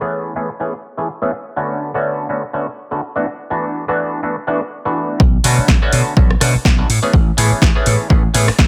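Groovy and funky, this filtered disco house excerpt moves at 124 BPM in B dorian with a light 16th-note swing, opening on a stringy, percussive clav heard through a combo amp, carrying phaser, sidechain pumping and a filter sweep over chords like Amaj9, Bm9 and E9sus4. At 5.2 seconds the drop arrives, bringing in a bright, amped slap bass that pumps under a low-pass filter and an up-front, tape-warm electronic kick. Moments later an analog drum machine adds a punchy snare, rim clicks and pumping hi-hats, all set in a light reverb.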